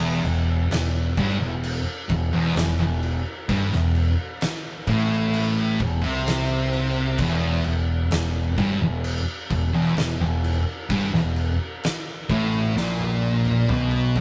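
Ominous and brooding, this slow stoner and doom metal excerpt in E minor crawls at 65 BPM on a single Em chord, with two thick, fuzz-drenched picked guitars grinding out a low riff, one up front and one in the background, over a growling, overdriven fingered bass and an oversized low-tuned drum kit with a fat snare, punchy kick, dark cymbals and a gritty edge that enters at 0.2 seconds and closes with a fill from 12.8 seconds, all captured in a rough rehearsal-room sound with tube saturation and light reverb.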